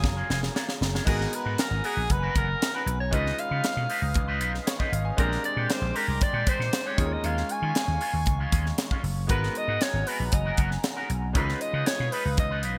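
Polished 1980s jazz-funk pop with a slick, urban mood, this clip cut from a longer piece moves at 117 BPM in a straight 4/4 in G# dorian, opening on a drum fill over the first 1.1 seconds before settling into a groove that cycles through rich chords like G#m9, C#9 and A#13. The crisp fusion drum kit sits up front with bright cymbals, a high-tuned snare, a tight kick and gated reverb, while a growly, amped vintage slap bass shares the foreground. A breathy alto saxophone carries the melody in a jazz style, with subtone, scooped notes and a digital delay trailing its lines. An electric guitar with an envelope filter plays a clean, twangy picked riff through lush chorus, and a brilliant baby grand piano adds accompaniment with long sustain and subtle chorus. Underneath, a hollow, flute-like soft pad holds slow-attack chords in the background, all framed by small-room ambience and a bright digital production typical of the era.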